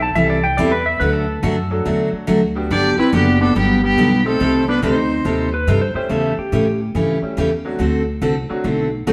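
A bright, twangy pedal steel guitar played with fingerpicks and volume swells opens this cheerful, swinging western swing country piece at 141 BPM in G major, over a thumpy, woody pizzicato upright bass and an up-front, full-bodied picked dreadnought acoustic guitar; a brilliant upright piano joins in the background at 1.7 seconds, and from 2.7 seconds a clean, warm lap steel carries the melody with slide while a clear bowed fiddle with light vibrato plays a second line, before the pedal steel returns at 5.5 seconds, the band playing live in a wet stone room.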